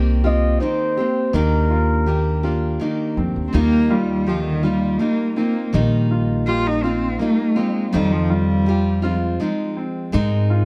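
Acoustic folk in a gentle, pastoral mood, this short excerpt moves at 82 BPM in a straight 3/4 lilt in Eb major, tuned slightly low. A picked steel-string acoustic guitar with a full-bodied dreadnought tone carries the accompaniment throughout, beside a clear upright piano playing arpeggios and a woody, thumpy pizzicato upright bass on gut strings. A mellow, distant flugelhorn states the melody in a classical style from 0.3 to 2.8 seconds, trailed by tape echo. At 3.5 seconds a rich, bowed cello takes over as a solo second line, expressive with vibrato, soft attacks and portamento, its nasal, boxy character sitting up front. Chords drift from Cm7 and Ebmaj7 through Ebadd9 and Fm7 to Abadd9, all set in a dark, warm production with light reverb.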